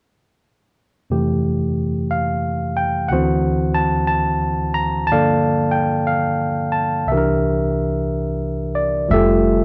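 A lilting swung 4/4 carries this late-night, intimate jazz ballad excerpt, where a bright, barky, lightly overdriven tine electric piano sits up front playing accompaniment through Fmaj9, D7, Gm9 and C7 before a woody, growly pizzicato upright bass enters at 9.1 seconds on the return to Fmaj9, all set in a dark production with moderate studio reverb.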